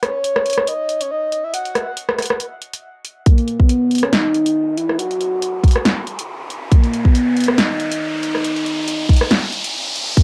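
Captured on cassette in a modest studio room with a short tail, this brooding, cavernous slice of deep dubstep moves at 139 BPM in a swung half-time feel, set in Eb phrygian. A breathy, flute-like synth lead with a soft attack, sub-octave weight, vibrato, lush chorus and dub echo carries the melody up front over an overdriven deep house kit of hi-hat, rim click and punchy snare. A tight electronic kick arrives at 3.3 seconds to launch a build-up, and an electronic riser joins at 4.4 seconds.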